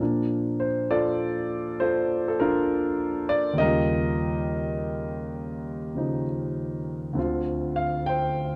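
Solo jazz piano with a sophisticated, warm mood, moving at an unhurried swing through a short passage cut from a longer piece. The clear grand piano sits up front with a present tone and long sustain, ranging from deep bass to the upper middle register as it moves from Bbmaj7 to Eb9 at 3.6 seconds and on to Dm7 at 7.2 seconds. A moderate studio ambience and a dark production colour surround the instrument across its 8.6 seconds.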